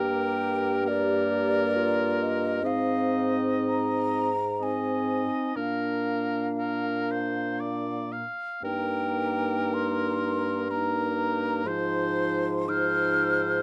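Serene and lyrical, this slow romantic movement for wind quintet in Eb major drifts at 60 BPM in 3/4 with uneven, rubato beats, passing through Gm, Ab, Bb, Eb/G and Fm7/Ab across its 13.6 seconds. An airy, hollow concert flute with soft attacks and vibrato carries the high melody, while a bright oboe with light vibrato sings a second line beneath it. A warm clarinet and a distant, roomy French horn supply the accompaniment over a dark bassoon bass, all sitting in moderate studio reverb within a dark, warm production.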